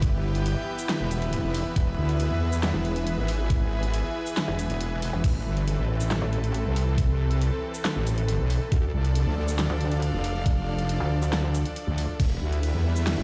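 Heavy and aggressive, this excerpt of wobble dubstep moves at 138 BPM in a half-time 4/4 feel. A saturated, detuned sawtooth wobble bass with chorus and overdrive sits up front beside a knocking, overdriven electronic kick that drops out between 4.8 and 5.2 seconds, while a dubstep kit with a huge snare, bright hats, handclaps, shaker and crash cymbal drives underneath. A pulsing pluck wobble bass joins at 2.7 seconds. A lush supersaw pad holds sustained chords moving from Em through Amadd9 and Dm, and a breathy, soft pad adds an airy texture, both with sidechain pumping, all heard through a light stone-room reverb on a big sound system.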